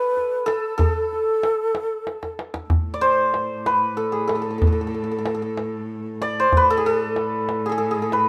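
A shimmering, ringing santur carries the melody up front through this short, longing and hypnotic piece of Persian modal ensemble music in A avaz esfahan, moving at a slow 63 BPM in a straight 6/8. A breathy, hollow ney plays a second line with vibrato until 2.3 s, while a tight, close tombak keeps the pulse and plays a fill that leads into the second section at 2.7 s. From there, a rich bowed cello holds a low drone on A2 with vibrato and portamento, sitting beneath the other parts in light reverb.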